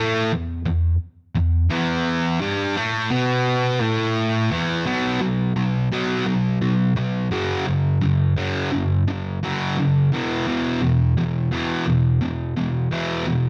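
Restless and cathartic, this rock fragment is cut from a longer piece and features a lone fuzz guitar in straight 4/4. The electric guitar is bright and compressed, picked with fuzz distortion and double-tracked for an up-front presence. It sits in a low register, spanning E2 to B3, through power chords on E5, B5, F#5 and back to E5. At 4.9 seconds the feel drops into half time, giving the second section a more deliberate weight that carries through to the end at 13.5 seconds. A moderate studio reverb lends the sound a sense of space, and the instrument is tuned to A at 445 Hz.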